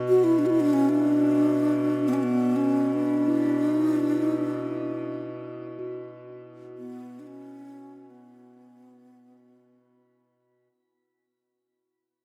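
World meditative music in free time, haunting and spacious, where an airy, hollow alto flute sings up front with vibrato and a soft attack through shimmer reverb and diffuse ambient delay over a reedy, breathing pedal harmonium drone, while a ringing bronze singing bowl with slow metallic beating enters in the background at 3.3 seconds, all set in a huge ambient space as the fragment fades from its opening.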